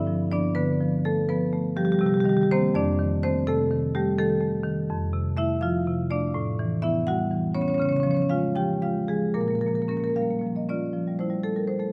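A solo marimba played with medium hard mallets opens this flowing, warm contemporary classical passage, cut from a longer piece, moving freely in rubato 6/8 across a span from F2 to G5, its dark, smooth, percussive tone sitting up front in a wet scoring-stage reverb as the harmony drifts through shifting colours such as Cm7, A9 and Db before settling on an Fmaj9 at 10.9 seconds.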